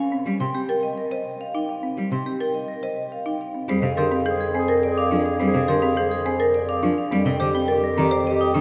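Vibraphone, played with medium hard mallets, carries the melody up front, its bright, metallic ring and fast motor vibrato sitting over this urgent, hypnotic excerpt of minimalist classical pattern music at 105 BPM in 3/4. Beneath it a woody, rustic folk marimba turns over arpeggios, its hardwood bars dry and mid-forward, while a large celesta spins its own bell-like, delicate arpeggios high above with a sweet, dark smoothness. A single clear cello bows a focused accompaniment with vibrato, moving from a C minor opening into F dorian at 3.7 s, when a mellow clarinet enters with a distant second line and a warm bass clarinet adds a roomy, deep foundation. The harmony shifts from Fm6 to Ebmaj7 over F at 7.1 s before the fragment is cut off, all of it bathed in a vast cathedral reverb that lets each struck note hang and echo.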